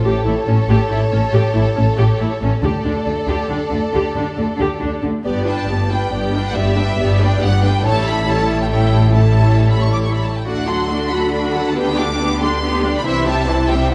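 Lush, vibrato-laden violins carry a soaring melody over a second violin line in this heroic, cinematic adventure-score passage at 139 BPM in 3/4, cut from a longer piece, with a build-up that settles into G major at 5.3 s. Rich violas, a focused cello section and expressive double basses fill out the harmony and bass, while a round, soft-mallet timpani sounds briefly in the background from 2.6 to 3.2 s. The whole string body sits in a wet scoring-stage reverb that lends the ensemble a grand, warm bloom.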